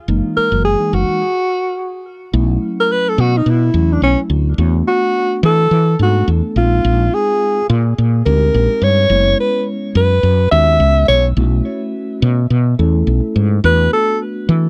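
Dry and close, this short cut from a longer electric jazz fusion piece has the intimate, tight sound of a 1970s studio, with hardly any reverb around the players. The mood is driving and nocturnal, with a 4/4 groove carrying a light sixteenth-note swing. A woody fretless electric bass sits up front, round and hollow-bodied, with a direct, amped tone. A mellow tine electric piano plays the chords further back, clean and touched with subtle chorus, as though heard through its built-in speakers. A dark alto saxophone carries the melody with vibrato, a punchy attack and a smooth top, its jazz phrasing trailed by tape echo. After a brief stop from 1.2 to 2.3 seconds, the saxophone takes a solo over suspended ninth chords that runs to the end at 14.7 seconds.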